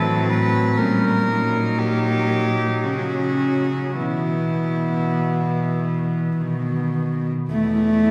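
In a rubato 3/4 at 50 to 62 BPM, this yearning, elegiac classical piece for cello ensemble sets a pure, nasal sul tasto cello melody, close and up front, above a floating, smooth-topped second cello line, a warm, intimate accompanying cello with light vibrato and an airy bow, and an up-front bass cello in the same soft-attack style, all bowed by single players inside a wet church reverb, with the melody ending at 6.3 s while the lower cellos hold on to 8.1 s in this fragment cut from a longer work.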